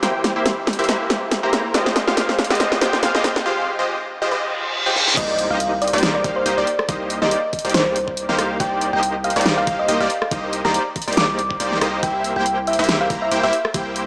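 A half-time future bass groove at 140 BPM in 4/4, with a light swing on the 16ths, drives this dreamy, bittersweet excerpt in C minor. From the start, up-front overdriven dubstep drums with a huge snare and bright hats fill beneath punchy, detuned supersaw stabs that pump and pass through a low-pass filter sweep, while a very quiet, shimmering ambient pad holds chords until 3.4 s and a faint riser and reverse cymbal build toward the drop at 5.2 s. There an impact lands, a knocking overdriven kick and a deep, mellow 808-style bass on C2 enter, and a round, tine-like thumb-piano pluck carries the melody with chorus and tape echo over the Cm9 harmony, all set in a lush hall reverb with a thin, small-speaker sound.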